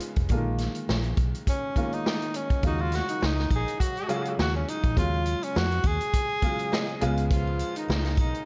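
A dark, warm production with light reverb and small-room ambience frames this bittersweet slice of lush 1970s-style soul, cut from a longer piece and set in a smooth, swung groove. A breathy tenor saxophone carries the melody up front with pop-style vibrato, and its line runs until 7.3 seconds. A clear grand piano with short sustain accompanies it and adds a fill near 6.4 seconds. The vintage drum kit sounds natural and up front, with a punchy kick, medium-tuned snare, hi-hat and a rolled-off top, while a foam-muted fingered electric bass adds a round, amped low end. At 2.6 seconds a warm horn section enters with smooth-topped stabs, light vibrato and tape echo, joined by a shimmering triangle in the background as the harmony moves from Bb7sus4 through Ebm11 toward Db7.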